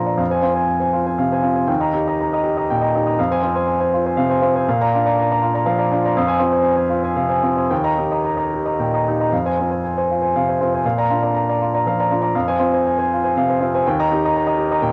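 A lone baby grand piano opens at 0.0 s, its natural tone and long sustain placed up front with a cassette-tape coloring, reaching from Eb2 up to Bb5 in an intimate, melancholic neoclassical minimalist piece in F dorian at 120 BPM in 3/4, played with a rubato feel and tuned to A4 = 439 Hz. The harmony circles through Fm, Eb and Bb, with the opening phrase returning at 9.3 s, and the piano continues alone until this fragment of a longer work is cut off at 14.9 s. Light reverb and the ambience of a small room give it the close, homespun character of a cassette recording made at home.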